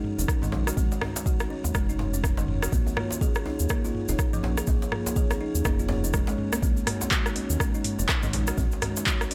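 A swung 123 BPM afro house groove in 4/4 rides on a deep, tape-warm electronic kick and an up-front afro-pop kit of handclaps, metallic hats, rim clicks and toms, with grainy cabasa kept close and dry, plus a rattling djembe set in the background of this earthy, spiritual cut from a longer piece. A round, detuned analog bass enters at 0.2 s with sidechain pumping, while a buzzing, woody kalimba plays delayed, pumping arpeggios over a moody, chorused analog pad that also pumps softly behind. The harmony moves from Absus4 to Bbm at 2.7 s and back to Absus4 at 6.6 s, wrapped in a digital ambience.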